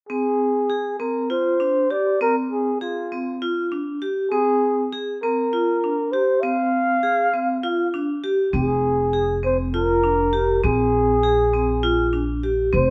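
A dark, breathy flugelhorn carries the melody up front throughout this restless, pensive chamber piece in 7/8, its soft attack, vibrato and whispered, intimate jazz-style tone sitting over a spring reverb. A vibraphone struck with hard mallets spins metallic, ringing arpeggios with a medium motor vibrato and a boxy, close sound, and a pizzicato upright bass adds a woody line from 8.5 seconds as the harmony shifts to F minor. This short cut is taken from a longer piece.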